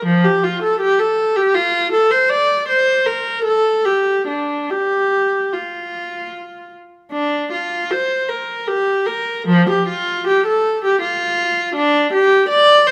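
A rich, expressive solo viola, bowed by one player and placed up front with vibrato and portamento, carries this flowing, serene 12.9-second excerpt of a baroque-style classical suite movement in 3/4, moving with rubato between 68 and 82 BPM across a range from F3 to D5, tuned to A4 = 439 Hz and captured by close, detailed microphones in light reverb.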